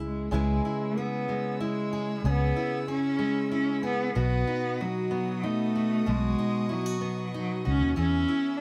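A straight 3/4 sway at 94 BPM carries this intimate, heartfelt acoustic folk-pop ballad, where a single bowed cello sings the melody with expressive vibrato and portamento over bright, full-bodied fingerpicked steel-string guitar with audible finger squeak, a dark, round, punchy fingered electric bass, and a soft-attack chamber string section floating in the distance with pure, sustained chords from 0.3 s, the whole set in light reverb as the harmony moves from C#m7 to B and on to E.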